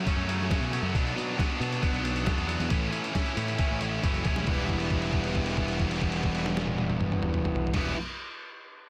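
Moody, cool indie rock cut from a longer piece, where a bright, double-tracked, overdriven guitar riff sits up front over a muffled, pitched-down lo-fi sampler-style drum kit with a thumpy kick and a tape-warm compressed sound, and a round, punchy fuzz bass, all under light reverb in a dense, heavily limited master, with a drum fill at 4.0 seconds leading into a held note from 4.5 to 7.7 seconds as the chords move from F#m through Bm and A to Em.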